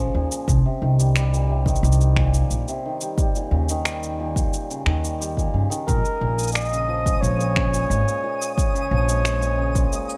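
A straight 4/4 pulse of deep electronic kick, shaker and finger snaps carries this intimate, delicate folktronica excerpt, where woody pizzicato upright bass sits up front beneath shimmering, ringing hammered dulcimer arpeggios softened by a low-pass filter and digital delay, before a close-miked, breathy flugelhorn enters at 5.9 seconds with scooped, jazz-style solo phrases and a faint twinkling granular texture with built-in reverb sparkles in the background from 6.4 seconds, all in a small room.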